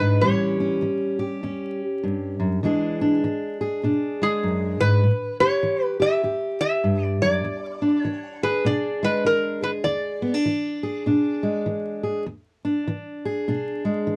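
A dark, crackling vinyl-toned recording in a booth with moderate ambience gives this fragment of acoustic country blues a swaggering, gritty mood at 100 BPM, with a swung 4/4 feel in E mixolydian, moving between A7 and E7. Up front, a metallic, nasal metal-body resonator slide guitar, played with fingerpicks, carries the melody until 11.6 seconds. A fingerpicked steel-string acoustic guitar with a warm auditorium body supplies the accompaniment throughout, continuing on its own until 14.2 seconds.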